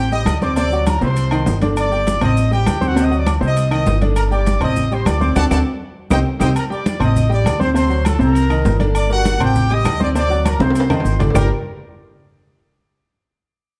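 Danceable and passionate, this salsa excerpt cycles through a minor-key progression, with a bright, punchy trumpet section carrying the melody over a clear, slightly worn grand piano and a woody, thumpy upright bass played pizzicato up front. Congas, maracas and ringing metal-shell timbales with agogo bells sit in the background, joined by very quiet claves, the maracas grainy and distant. A band accent lands from 5.4 to 6.6 seconds, and a drum fill from 10.6 seconds leads into a new section at 11.4 seconds, all within a dark production bathed in a large studio reverb.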